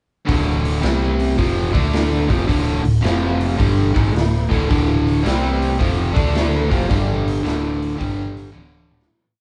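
A band playing live in one room fills a large studio with moderate reverb, and the sound is dark at the top. This short, complete blues rock and southern rock piece is gritty and driving, moving at 109 BPM in 4/4 with a swung eighth-note feel. Up front, a double-tracked, overdriven semi-hollow guitar plays a power-chord riff built on D5, C5, F5 and G5 from the start. A round, foam-muted fingered electric bass walks beneath it and doubles the riff. The raw garage drum kit sounds saturated, with a punchy kick, a medium-tuned snare, hi-hat and toms in a stone-room ambience with a rolled-off top, driving a big rock groove. The piece begins fading at 6.9 seconds, and a drum fill arrives at 8.5 seconds just before it ends at 9.1 seconds.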